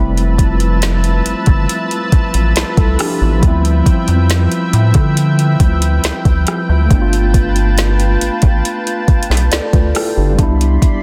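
Dense and heavily limited with digital ambience, this tender, dreamy contemporary R&B excerpt at 69 BPM sets a mellow tine electric piano heard through built-in speakers beside a lush, warbling, detuned unison pad under chorus, while a rubbery, hollow square bass with a resonant filter pluck and a smooth drum kit of soft kick, woody snare, rim click and metallic hats sit up front, moving through Fmaj7, Dm11, G9 and Cmaj9.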